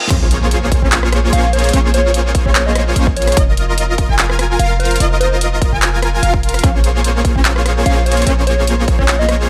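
Dry, loud and high-passed, this dreamy, lush future bass drop at 147 BPM in Bb minor opens with a very quiet reverse cymbal and impact over the first 1.7 seconds, as a huge, detuned supersaw riff with sidechain pumping and digital delay, a boomy 808-style bass, a punchy overdriven electronic kick, and a layered dance kit of crash, handclaps, hi-hat and rim click drive a half-time, slightly swung groove, while a faint, evolving unison pluck plays arpeggios and a round, warbling FM lead with chorus sits in the background from 1.3 seconds, pausing between 5.4 and 7.9 seconds, all moving between Bbm9 and F7sus4 in this cut from a longer piece.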